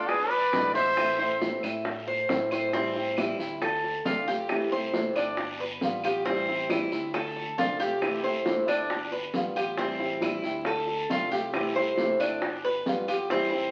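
Danceable and nostalgic, this Cuban son and guajira fragment opens with a breathy, whispered trumpet melody up front and a clear, biting chamber violin section in the background, both falling away by 1.4 s, while a bright, metallic Cuban tres picks arpeggios over fingerpicked flamenco guitar with audible finger squeak, a smooth gliding synth bass with portamento, round low-tuned bongos, distant woody claves and a raspy guiro, all bathed in large studio reverb and the crackle of a very old 78 rpm record as the chords cycle through Am7, Dm7, C6 and G9.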